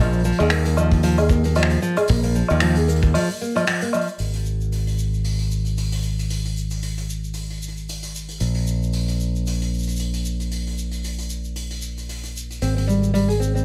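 A lightly swung 114 BPM groove in 4/4 opens this hopeful, delicate folktronica excerpt, with a soft brush kit of finger snaps, hi-hat, shaker and woodblock sitting distant and roomy while a tight, rolled-off kick thumps only from 0.9 to 3.1 seconds before a break and a band accent at 3.7. A bright, punchy fingered electric bass stays up front throughout, and a dark, woody nylon-string guitar fingerpicks delayed arpeggios at the start, drops out, then returns at 12.6 seconds on an Abmaj7. Light reverb gives the short passage an intimate small-room air.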